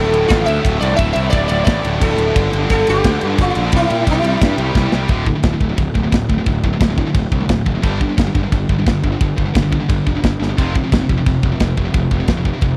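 A buzzing, shimmering sitar melody opens this heavy, aggressive metal excerpt over a double-tracked high-gain guitar riff, growly fuzz bass and a tight, up-front drum kit playing in half time, and as the sitar drops out at 4.9 seconds, a drum fill that begins at 4.8 seconds carries the band out of half time at 5.1 seconds, with another fill at 10.4 seconds, all in a dry, close 1970s-style studio sound.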